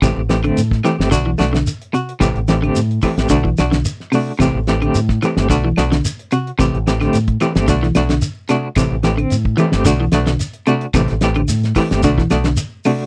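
Afrobeat at 110 BPM in A dorian, this defiant, hypnotic cut from a longer piece rocks between Am7 and Bm7 as a bright, twangy, picked guitar plays low arpeggios and a darker, fingered guitar up front fires stabs, both at the edge of break-up with tremolo, over a deep, round dub bass that drops out at 12.5 seconds, a cloth-damped, thuddy kit with a fat snare and tight kick, a grainy shekere and woody claves in the background, all in a dry, close 1970s-style studio sound with light reverb.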